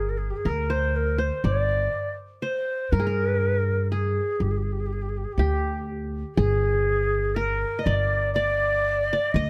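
Longing and hypnotic, this short cut from a longer Turkish makam ensemble piece moves at 122 BPM in a straight 10/8, set in G makam kurdi. A breathy ney carries the melody up front, its end-blown reed-cane tone showing vibrato and tongued notes. Behind it a mellow qanun plays a second line in the same register, its plectrum-plucked triple strings giving a bright edge and sitting a little further back in the mix. An upright bass anchors the low end with pizzicato notes from steel strings, woody and thumpy, placed up front alongside the ney. All three parts play throughout, with the music moving into a new section at 6.4 seconds before the cut ends at 9.5 seconds. The recording is close and detailed with little reverb, so each instrument sounds intimate and clear.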